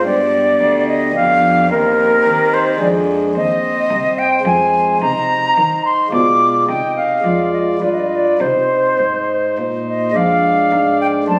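Classical baroque-style sonata movement in a flowing, introspective triple metre, cut from a longer piece, where an airy silver concert flute with vibrato carries the melody over a principal pipe organ with baroque voicing and a touch of chiff, while a rich, reedy cello with gut-string tone bows the bass line, all set in a recital hall reverb captured on a phone in the room.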